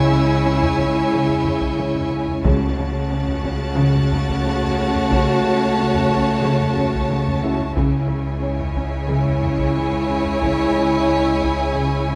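Cinematic suspense film score, eerie and mysterious, built on bowed strings with vibrato: a focused violin section carries the melody over a clear, intense second violin line, lush viola accompaniment, and cello and double bass sections holding the bass, while a second cello section plays a riff and dark, soft-attacked French horns sustain chords. A deep, rumbling, nasal drone with its own built-in reverb sits in the background beneath a very quiet felt-muted upright piano and a high violin texture that stops at 7.4 seconds. Close, dry taiko drums struck with hard sticks enter at 0.6 seconds, a brief hard-mallet timpani hit lands at 2.4 seconds, and the whole ensemble sits in a wet scoring-stage reverb.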